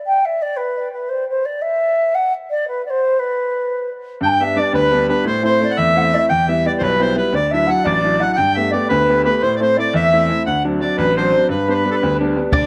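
A mellow wooden flute with gentle vibrato and a soft attack carries the melody of this lively, cheerful Celtic jig in 6/8, playing alone from 0.1 seconds with a touch of tape echo. At 4.2 seconds a reedy accordion joins on a second line while a bright concert grand piano with deep bass supplies the accompaniment, moving through a simple progression that settles back home on G. At 12.5 seconds, just as this short cut from a longer piece closes, a picked, double-strung mandolin and an open, boomy bodhran appear, all heard through close, detailed microphones and light reverb.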